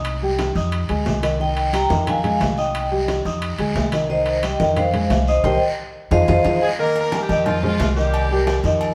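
Heard through a stone-room reverb with the band playing live together, this driving, danceable salsa clip sets a dark, mellow concert grand piano and a woody, thumpy upright bass up front over raspy, distant guiro, ringing, saturated timbales and agogo bells and soft-handed congas in the background, while a hard-mallet vibraphone carries the melody from 1.4 s, a drum fill and band accent arrive at 5.4 s, and a brilliant, punchy horn section takes over at 6.6 s.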